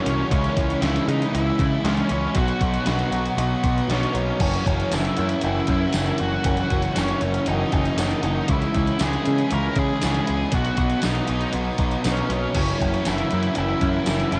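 Shoegaze and dream pop rock at 118 BPM in F# mixolydian, this dreamy, blissful fragment of a longer piece has a dark octave-fuzz lead guitar carrying the melody through tape echo, over riffs from a thick fuzz guitar with lush chorus and an overdriven semi-hollow guitar washed in reverse reverb. A growling, bright picked electric bass and a gated 80s digital drum machine with a thumpy kick and gated reverb snare drive the C#m7, Bmaj7 and F#7 changes, joined by a jingly tambourine from 4.9 seconds. An icy, crystalline glass pad sits very quietly above, a shimmering fingerpicked twelve-string acoustic guitar is barely audible in the mix, and the whole has the sound of a home cassette recording.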